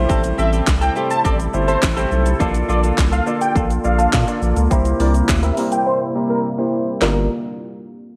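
Dance-pop at 104 BPM in G dorian, this energetic, driving excerpt from a longer piece runs on a straight 4/4 pulse and is tuned to A4 = 444 Hz. A saturated sub bass, deep and thick with a fast attack, sits up front with sidechain pumping. The house drum kit is also up front, with a punchy kick, cracking snare, handclaps, hi-hat and shaker. A clear, polished baby grand piano plays accompaniment, and a detuned sawtooth pad holds sustained chords in the background; both are shaped by sidechain pumping and a low-pass filter. A bright, compressed clean electric guitar, recorded direct, plays a riff through analog chorus, while a bold, nasal unison lead enters at 0.4 s carrying a warbling, vibrato-laden melody with slapback echo. Over a moderate echo chamber reverb, a filter sweep runs across the Am7, Bbmaj7 and C7 chords, and a break at 5.9 s leads to a new section on Gm7 at 7.0 s.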